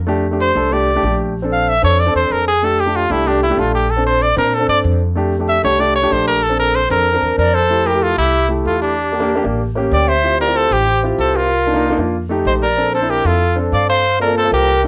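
A straight 4/4 pulse at 189 BPM drives this lively, sophisticated jazz excerpt, cut from a longer piece and captured as a home cassette recording in a moderate room, where a woody, thumpy pizzicato upright bass and a concert grand piano with a deep low end and tape colour support a punchy, up-front trumpet that solos with scooped notes and light vibrato over chords moving from F6 to Bbmaj7, until a hollow, tongued flute enters in the background at 7.4 seconds as the harmony shifts through Em7b5, A7b9 and Dm11 toward Gm11.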